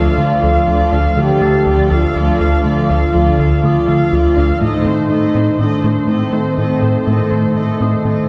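Brooding and tense, this cinematic excerpt blends orchestral and electronic scoring at 122 BPM in an uneasy 5/4, moving from D minor to A diminished at 4.6 seconds. A dark French horn section holds sustained chords alongside a brassy, bold analog pad with chorus, whose sawtooth tone carries an airy noise layer and a filter swell. Underneath, a round analog bass plays a deep riff while a lush cello section bows the low line in the background, and a viola section adds smooth, even accompaniment with vibrato. A very quiet, string-like resonator pluck traces twangy arpeggios with a fast, decaying attack, and a felt-muted upright piano adds soft, mellow texture high above. The whole ensemble sits in a reverberant scoring stage, heard from further back in the room, across the excerpt's roughly 8.3 seconds.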